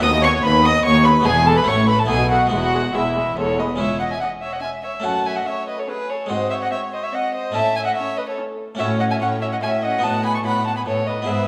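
An up-front solo violin with a reedy gut-string tone leads this festive, brilliant baroque-style concerto passage in triple time, joined by a very quiet violin section on the melody while a close chamber violin section carries a second line. A bright, plucked Flemish-style harpsichord and a background viola section fill in the accompaniment, and a nasal cello section holds the bass throughout, joined by a rich double bass section only until 3.7 s, just before the harmony shifts at 3.8 s. The ensemble sits in a wet recital-hall reverb.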